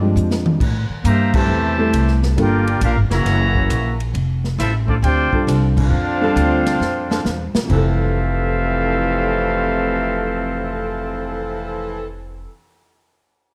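Light reverb and a dark, warm production frame this energetic big band swing excerpt in F major, moving at 135 BPM in 4/4 with a swing feel on the eighths. A woody pizzicato upright bass sits up front, and an acoustic drum kit with airy, dark cymbals, a medium-tuned snare and a punchy kick opens with a fill and adds another just before the second section begins at 7.7 seconds. The trumpet section carries the melody with a vintage, tight, soft-attacked tone and light vibrato, while a clear trombone section plays a second line beneath it, and the full band hits two accents. A smooth-topped saxophone section holds sustained chords in the background, and a natural-sounding baby grand piano comps, dropping out briefly early on before returning at 5.3 seconds. The harmony moves from a rootless Bb13 through Am7, Gm7 and Gb7 to F6, then settles on Fmaj7.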